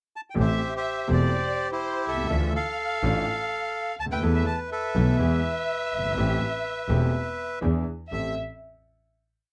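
A dry, close 1970s-style studio sound frames this short, passionate and dramatic tango in A minor at 124 BPM, where an up-front, bright bandoneon carries a motif-based melody over a clear, deep-bassed grand piano and a bowed, gut-string double bass sharing a milonga rhythm, while a warm violin section adds an expressive unison second line, moving from Am7 through Dmadd9 and Esus4 to E7 before settling on a final Am7 chord at 8.1 seconds.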